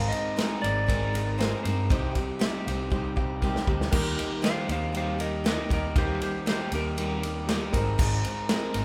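A clean lap steel melody played with fingerpicks carries this reflective, dusty folk and heartland rock excerpt at 118 BPM in 4/4, with shimmering octave-doubled twelve-string acoustic picking in the background, a very quiet deep-bassed grand piano, a bright, twangy, slightly broken-up electric guitar riff with spring reverb, a dark, round fingered bass and an up-front natural country drum kit with a punchy kick, as a piano fill from 2.4 s and a drum fill lead into an electric slide guitar solo at 3.9 s, all from a band playing live in one large studio room.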